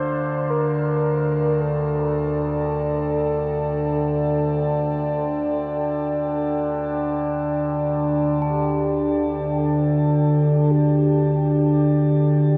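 A vast, echoing cathedral space with a long five-second reverb tail wraps this short, unsettling piece of dark ambient drone, cut from a longer work and floating in free time with a tuning of A4 = 444 Hz. Up front, a resonant drone built from sawtooth and sine tones sits low and sustained, its overtones moving under chorus and its own reverb. Beside it, a deep, nasal analog pad of detuned square, sawtooth and triangle waves with a sub octave holds moody chords through chorus and shimmer reverb, moving from D minor to a bare D fifth at 8.4 s. A round, horn-like synth lead carries a soft-attack melody with vibrato, touched by subtle chorus, shimmer reverb and delay. In the background, a bronze singing bowl struck with a felt mallet adds a metallic, meditative ringing with slow beating, bathed in shimmer reverb.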